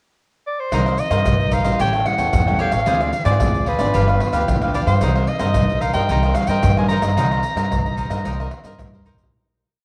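This is a nostalgic, bittersweet samba and choro piece in C minor, moving at 112 BPM in a straight 4/4 with the feel of a home recording on cassette. A mellow soprano saxophone opens over a pickup bar at 0.5 seconds, carrying an up-front, jazz-style melody built from motifs in sentence-like phrases, with soft attacks, vibrato and scooped notes giving it a vintage tone. Beneath it, a crisp, picked cavaquinho strums in sixteenths while a classical nylon-string guitar sits in the background, fingerpicking thumb bass lines and syncopated plucked chords. A woody pizzicato upright bass plays a samba bass figure, and a percussion section of egg shaker, deep surdo, pandeiro and tamborim is played with hard hands in a distant, large-room sound. The harmony moves from Cm7 through A7, Dm7b5 and G7 back to Cm7, with light reverb and small room ambience around the ensemble. A fade-out begins at 7.2 seconds, and a drum fill arrives at 8.8 seconds to close the piece.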